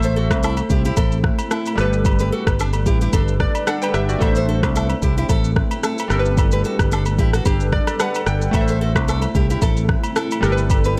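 A swung sixteenth-note afrobeats groove sets a mellow, hypnotic mood, driven by an electronic, produced drum kit with a deep kick, rim click and shaker sitting up front. Beneath it, a fingered electric bass, warm and direct, holds the low end prominently, while close, dry agogo bells and woodblock add light acoustic color. A bright, fingerpicked nylon-string guitar plays a classical-toned riff with audible finger squeak, treated with delay. Glassy digital keys with a fast, decaying attack and chorus provide accompaniment, stepping forward with fills at 3.1 and 7.5 seconds. From 0.6 seconds, a cloudy granular pad with a slow attack and built-in reverb pumps gently in the background, sustaining the alternating Am and Gadd9 chords in a dry, intimate mix cut from a longer piece.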